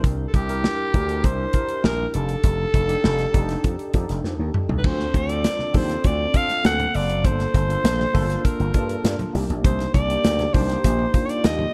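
Breezy and upbeat, this polished 1980s jazz-funk pop excerpt moves at 100 BPM in a straight 4/4, with a raspy, gritty alto saxophone carrying the melody up front over a clean tine electric piano colored by analog chorus, a growly, bright slap bass pushed through an envelope filter, and a punchy, dark studio drum kit whose fill at 4.2 seconds leads into a new section where very quiet, damped congas join at 4.8 seconds, all set in light reverb over chords moving from C9 and F13 to Dm7, Gm9 and Cm7.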